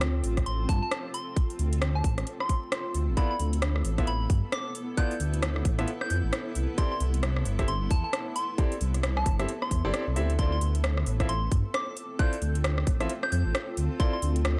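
A rumbling, detuned saw bass sits up front in this moody, late-night two-step UK garage excerpt at 133 BPM in D dorian, joined by a tight electronic kick, an overdriven house kit with metallic hats and rim clicks, a cloudy granular pad that pumps with sidechain, and a soft FM bell melody treated with chorus, phaser and dub echo, while a brilliant grand piano with audible action noise adds echoing stabs from 3.2 seconds over Dm7, G13, C69 and Dm9 chords, all beneath a layer of vinyl crackle.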